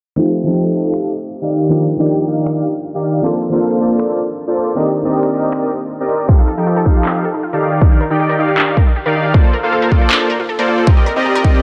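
This short future bass excerpt opens with a dark, mellow grand piano and a soft, smooth supersaw riff, both breathing with sidechain pumping and trailing dub echo, while a low-pass filter sweep runs across the supersaw for the whole passage. The mood is playful and lush, set at 157 BPM in a half-time 4/4 feel in Eb lydian, with chords cycling through F7, Ebmaj7, Bbmaj7 and Cm7. Layered electronic finger snaps and handclaps join at 0.9 seconds, and the boxy piano drops out at 6.3 seconds just as a punchy, up-front electronic kick drum arrives. At that point a bright, detuned unison pluck enters, playing sawtooth, wave-folded and ring-modulated arpeggios, also pumping and echoing. The supersaw sits up front throughout, evolving and sustained, and the whole mix is bathed in light reverb under a low-pass filter.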